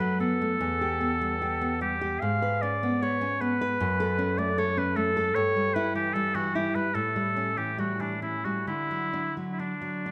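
Serene and tender, this brief passage from a longer romantic duo pairs oboe and classical guitar in a gently rubato 4/4. The oboe carries the melody from the start, its tone warm and vibrato-laden with a smooth top, sung in a classical style and placed up front like a soloist. Beside it, the nylon-string guitar supplies fingerpicked accompaniment with the warm tone of fresh strings, reaching down into a deep bass register and sitting equally close. The harmony drifts through a sequence of shifting chords before settling onto a D chord at 8.7 seconds, just as the fragment ends at 10.1 seconds. A moderate recital hall reverb surrounds both instruments, lending the intimate performance a graceful sense of space.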